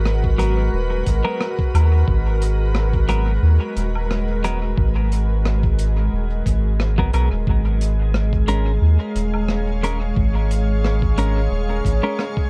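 Spacious and meditative, this short ambient dub excerpt moves at 89 BPM in G# dorian with a gentle 16th-note swing, resting on a G#m9 chord before shifting to A#m7 at 7.5 seconds. A pure, organ-like pad with ensemble chorus and its own reverb sustains the chords over a deep, round sub bass that sits up front. A muffled, thumpy sampled kick, a dark acoustic kit of hi-hat, rim click and woodblock with dub echo, and clean, fingered electric guitar stabs, also echoed, fill out a dark, small-room sound.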